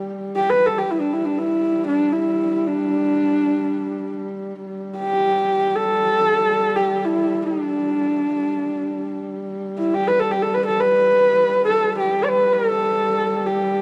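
A dark, husky horsehead fiddle carries the melody up front, entering at 0.4 seconds and moving between D4 and D5 with vibrato, portamento, a soft attack and an airy bow. Beneath it, a second horsehead fiddle holds a drone on G3 from the very start, sitting much lower in the mix with a warm tone of its own. This is traditional Mongolian folk music, and its mood feels vast and proud. Each fiddle is a single player bowing horsehair strings, heard close and intimate, while a moderate, huge ambient reverb with a 4.7-second decay opens a deep space around them. The production leans shadowy, and this fragment of a longer piece unfolds as one unbroken section lasting 13.8 seconds.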